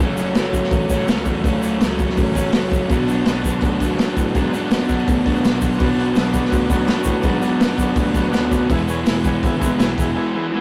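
A raw, double-tracked overdriven garage guitar riff leads this swaggering garage rock excerpt in F# minor at 165 BPM, driven by a punchy, gritty breakbeat kit and a growly picked bass moving through F#m, Bm and E, with a grainy egg shaker tucked behind and a buzzy vintage combo organ entering on sustained chords at 5.8 seconds, all captured in a rough, tube-saturated rehearsal-room sound before a short break at 10.2 seconds.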